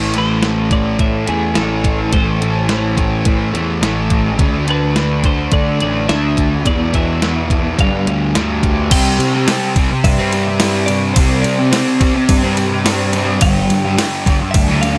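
A dry mix opens this brooding, melancholic stretch of shoegaze and dream pop rock in A minor, moving at 106 BPM in a straight 4/4. Up front, a double-tracked, compressed fuzz guitar riff bathed in lush chorus sits over a punchy, overdriven picked electric bass and a detuned 8-bit drum machine with a thumpy kick, medium-tuned snare, hi-hat, ride and crash. Further back, a bright, twangy twelve-string electric guitar carries the melody through spring reverb and analog delay, as the chords move from A minor through D5, E5 and G5 to C5 at 8.9 seconds, returning to G5 at 13.4 seconds.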